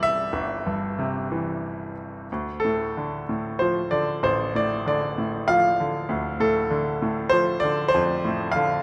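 Bittersweet and cool, this brief excerpt from a lyrical classical solo piano piece unfolds in 3/4 with flexible rubato, its bright, brilliant grand piano sitting up front with a polished, short-sustained tone that ranges from deep bass to the upper middle register, moving from a C chord to a Dm7 at 2.3 seconds inside a moderate recital-hall reverb and a dark, warm production.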